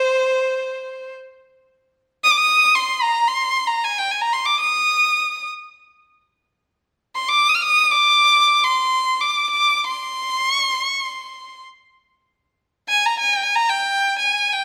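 A single bowed violin, rich and focused with vibrato and placed up front, plays alone in free time from 0.0 to 14.6 seconds, ranging from C5 to F6 in makam nihavent on C, a longing, soulful Turkish makam passage cut from a longer piece and set in a moderate recital hall reverb.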